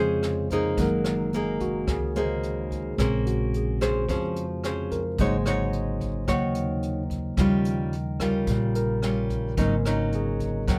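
A worn, slightly out-of-tune tine electric piano, lightly overdriven through a combo amp, solos throughout this melancholic, intimate bossa nova fragment cut from a longer piece, over up-front fingerpicked nylon-string guitar, woody pizzicato upright bass on gut strings, and a small-room brush kit with hi-hat, rim click and a boomy kick that enters at 0.2 seconds, all captured dry and close-miked in fine detail.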